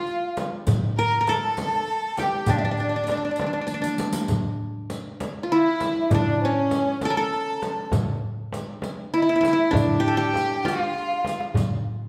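A slow 6/8 pulse at 66 BPM, felt in dotted quarters, carries this hypnotic, soulful Arabic maqam ensemble passage in D maqam nahawand, cut from a longer piece. Up front, the acoustic qanun leads the melody with the bright-edged ring of its fingerpicked triple strings. Behind it, a breathy, hollow end-blown ney adds a second line higher up, mellow with a soft attack and vibrato, while an earthy chamber violin section bows a further line with light vibrato. The percussion is played with soft hands: a warm, deep clay-shell darbuka sits close and dry, joined by a large frame drum and the jingles of a riq. Drum fills mark the turn into the second section at 3.7 s and arrive again near the close at 11.0 s. The band plays live in one room, wrapped in a wet studio reverb.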